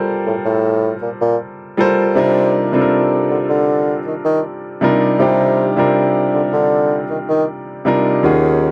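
A soft-attacked bassoon with light vibrato carries the bass line up front in classical style from 0.3 s, over a natural-sounding concert grand piano with deep bass and a warm tone playing Gm11 moving to Cm11 at 2.2 s, in this moody, longing contemporary R&B passage at 79 BPM, cut from a longer piece and set in a lush hall reverb.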